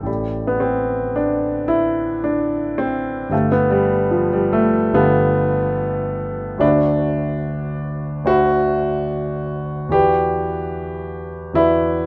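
Set in a moderate studio reverb, this nocturnal, hazy impressionist solo piano passage, cut from a longer piece, finds a clear, up-front concert grand with a deep bass and natural tone drifting in rubato around 73 BPM in A dorian, moving through A9sus4, G9, D13 and Em9 chords across its 12.1 seconds.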